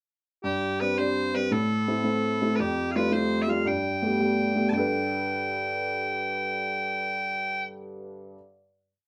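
Bagpipes and upright piano enter together at 0.4 seconds in this short, bright and cheerful Celtic folk jig, set in a straight 6/8 at 112 BPM in G mixolydian, tuned to A4 = 436 Hz. The bagpipes carry the melody as a piercing, continuous solo line, sitting up front and building song-like phrases from short motifs. Alongside them, also up front, the upright piano has a clear, woody and slightly worn tone, a little out of tune, with long sustain; it keeps the pulse through bass notes and chord figures. The harmony moves through Gsus4, Am, Fadd9 and Gadd9 before the piece settles on a held final chord. The pipes stop at 7.6 seconds, letting the piano ring on alone until 8.4 seconds, all within a small room's moderate reverb.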